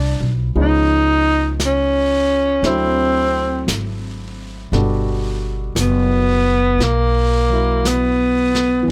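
A breathy, whispered tenor saxophone sits up front with vibrato and scooped notes in this intimate, late-night swung jazz ballad fragment, taking a solo from 4.7 s over a polished grand piano, a woody, growly pizzicato upright bass and a vintage brush drum kit with a rolled-off top that enters at 0.6 s, recorded dry and close.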